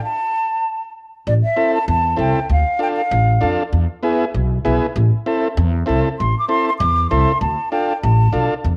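A small room's moderate echo-chamber reverb frames this danceable, passionate cumbia excerpt, where an airy, hollow silver concert flute with vibrato plays alone over a stop until a woody, pizzicato upright bass enters at 1.3 seconds and a reedy, overdriven vintage combo organ follows just after, moving through Am, Dm and E before the flute returns at 6.2 seconds.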